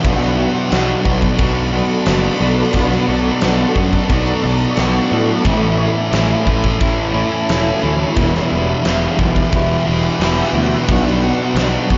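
The recording is dreamy and soaked in reverb, with a very long ambient tail and a top end that stops short of 7.5 kHz, giving the whole mix a hazy, muffled glow. This 12-second excerpt from a longer piece sits in the shoegaze and dream pop corner of rock, moving at 89 BPM in a straight 4/4 through Bm7, A, Emadd9 and back to Bm7. Up front, a thick fuzz guitar plays a low, distorted riff coated in lush chorus, alongside an overdriven electric guitar whose riff trails through reverse reverb. A fuzz-driven picked bass growls underneath with overdrive, while a huge arena drum kit of crash, punchy kick and fat snare booms from the background with a natural big-room sound. Behind it all, a granular cloud pad holds detuned, wave-folded sustained chords that blur and evolve with slow attacks, ensemble chorus and its own built-in reverb, adding a bright shimmer above the guitars.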